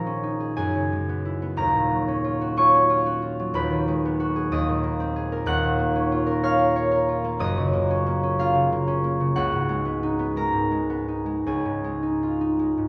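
Heard through a lush recital-hall reverb from further back in the room, this gentle, wistful excerpt of classical solo harp features a lone concert harp, fingerpicked and ringing, drifting with rubato in 6/8 across a range from D#1 to Gb6 through extended chords that move from A#m7 at the start to Dbadd9 at 11.5 seconds.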